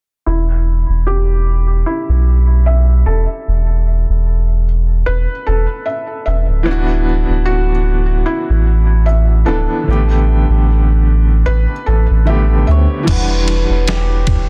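A lazy swing on the sixteenths pulls this smoky, melancholic trip hop fragment along in a slow four, cut from a longer piece. A felt-muted upright piano opens with soft, intimate arpeggios, its short notes carrying audible action noise through a low-pass filter, tape echo and a long filter sweep, while a deep, round dub sub bass sits up front beneath it over Em, D69 and A9sus4. At 6.6 seconds a woody, natural upright piano joins with tremolo-shaded accompaniment, also filtered and echoed. A hammered dulcimer enters at 12.7 seconds with a brief shimmering, ringing melody trailed by dub echo. At 13.1 seconds, as the harmony moves to Em9 and the felt piano drops out, a sampler-style drum kit arrives, pitched down, muffled and compressed, with a thumpy kick, snare, ride and crash set in studio reverb. The small room ambience and a dense, heavily limited master keep the mix close and full.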